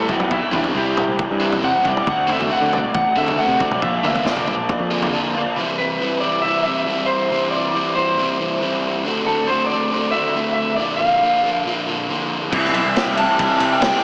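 A lush hall reverb blended with small-room ambience gives this carefree, jangly indie rock excerpt at 138 BPM both a big arena sound and a small-speaker sound, as a lo-fi, slightly broken-up guitar through a small old amp carries the melody with spring reverb and slapback echo and a clean electric guitar solo runs over the opening 5.6 seconds, while an up-front, hollow-bodied overdriven semi-hollow guitar and a raw garage guitar with analog chorus set further back play riffs over C, D7 and Bb, joined by a punchy fuzz bass and a vintage drum kit with dark cymbals and a rolled-off top, with the garage guitar, bass and drums dropping out around the end of the opening section and returning at 12.5 seconds.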